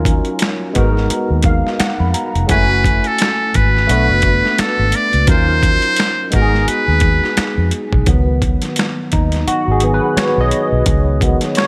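A buzzy trumpet with a metal mute carries the melody from 2.5 to 7.7 seconds, breathy and thin with a light vibrato, over a barky tine electric piano with ensemble chorus that adds a fill before the horn enters and takes a solo from 8.1 seconds to the close. This late-night, smooth neo-soul R&B excerpt moves at 86 BPM with a swung sixteenth feel, harmonized by minor ninth and minor seventh chords that settle on a suspended dominant. Underneath, a dark, round, foam-muted fingered bass sits beside a gritty, overdriven boom bap drum kit of thumpy kick, snare, hi-hat and finger snaps, all in light reverb.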